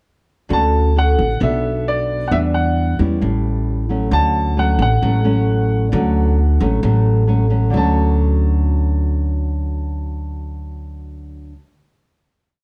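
A woody, thumpy pizzicato upright bass sits up front with a root-and-fifth two-feel beneath a thumb-plucked nylon-string guitar's syncopated bossa nova chords and a warm grand piano's motif-based melody in sentence-like phrases, making this short, sunny and romantic bossa nova piece, darkly produced with light reverb, which moves through a single section before settling on a final chord at 7.7 seconds.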